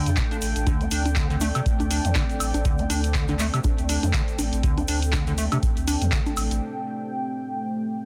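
A dark, detuned sawtooth pad, a squelchy square-wave acid bass and a warbling, lo-fi tape-like pad open this gritty, raw acid house excerpt together on a D5 chord, all three breathing with sidechain pumping. The tempo sits at 121 BPM in 4/4 with a 57% swing on the 16ths. The acid bass riff has a hollow, resonant tone with a filter sweep, lush chorus and tape echo, while a round sine sub bass and a deep, tape-warm electronic kick anchor the low end. A punchy analog drum machine adds congas, handclaps, hi-hat and woodblock, with a grainy, bright cabasa set back in a live room. The slow-attack tape pad carries chorus and its own reverb, giving a nostalgic haze against an otherwise dry, dense and heavily limited master. The acid bass and kick fall away at 6.2 s, and at 6.6 s the rest of the groove drops out for a break, leaving the moody analog pad sustaining alone until 8.1 s.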